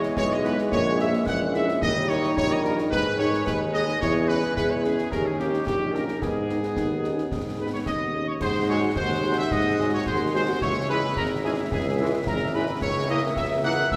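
In a straight 2/4 at 109 BPM, this stern, martial wind-band march in G# minor moves through a brief excerpt cut from a longer piece, with a bright, tight trumpet section carrying the melody over a clear, vintage-toned tuba bass and the close, dry snare, bass drum and dark-sounding clash cymbals. A shadowy, distant woodwind section and a mellow, lightly vibrato euphonium trace second lines in the background, while a crisp trombone section holds sustained chords and a very quiet, roomy horn section adds accompaniment from 0.4 seconds. A pure, straight-toned piccolo enters at 7.6 seconds with lifted highs, shortly before the euphonium drops out at 8.4 seconds, all bathed in the lush reverb of a concert hall.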